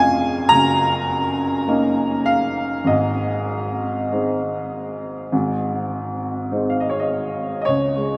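Dreamy and nostalgic, this brief fragment of a romantic nocturne for solo piano drifts with a free, rubato pulse in 4/4, cut from a longer piece. A clear upright piano plays alone for its full 8.2 seconds, ranging from F1 up to Bb5, with a woody, open tone that sits up front. A huge, wet reverb with an 8.3-second decay places the instrument in a vast, echoing space, so each note hangs in the air long after it sounds. The harmony moves from Db/F through Ebm7/Gb at 0.5 seconds before settling on Ab at 2.9 seconds. The result is cavernous in atmosphere, a fleeting glimpse of a wistful reverie.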